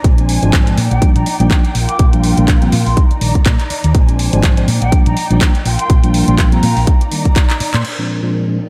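Lightly reverberant digital ambience wraps this short, feel-good slice of filtered disco house, where a punchy, tape-warm electronic kick sits up front and a house kit of hi-hat, handclaps and crash, re-recorded in a small room, has its hats and cymbals pumping against the sidechain before a drum fill at 7.5 seconds. A round, amped hollow-body electric bass and a mellow, clean tine electric piano with phaser groove through a cycle of extended Bb-rooted chords, all dulled by a low-pass filter and breathing with the sidechain. Above them, a lush, dark violin section holds bowed chords with vibrato and portamento under vintage 12-bit sampler grit, while a pure silver concert flute, set in the background with analog delay, carries the funky melody from 0.9 seconds.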